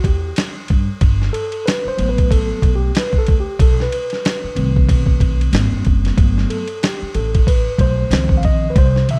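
The recording sounds dry and close, with little room reverb overall, in a short excerpt of relaxed, cool jazz-hop at 93 BPM in 4/4, swung at 59% on the sixteenths and centred on G major. A dusty, sampler-style drum kit sits up front, its gritty, compressed hi-hat, ride cymbal, fat snare and thumpy kick carrying a tape-warm character and the air of a large room. Beneath it, a plucked upright bass on steel strings adds a woody, growly low end that stops at 9.0 seconds. The mellow tine electric piano takes the solo for the full 9.2 seconds, clean and heard through its built-in speakers, with a plate reverb giving it a soft halo. Its harmony moves from a rootless C through Gmaj9, B7b9 and Abmaj9, then back to Gmaj9 before landing on C#maj9.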